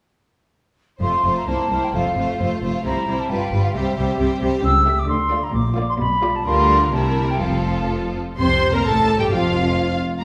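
The silver concert flute stands out most, its airy, straight-toned line floating up front from 1.0 s until 7.9 s as a graceful, cheerful classical-period orchestral passage in F major moves at a quick 122-135 BPM in 2/4 with a rubato feel. A rich, lush violin section carries the melody while a second violin section adds a clear counter-line, violas fill in accompaniment, and bright cellos join double basses on the bass, all bowed with vibrato. At 8.4 s the music turns to a new section where a soft-attacked French horn section sustains chords and timpani strike briefly in the background, the whole ensemble heard from further back in a reverberant recital hall.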